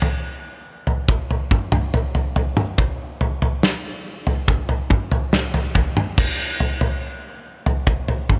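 Brooding and melancholic, this short rock excerpt moves at 71 BPM in a straight 4/4 feel. A loose indie drum kit carries the whole passage alone from 0.0 to 8.4 seconds, using crash cymbal, kick drum, snare drum and toms. The kit sounds acoustic and up front, with a mid-forward character, a medium-tuned snare, a tight kick and a rolled-off top end. It sits in a small room with light reverb around it. The passage works as a build-up, cut from a longer piece and leaving the sense that more is about to arrive.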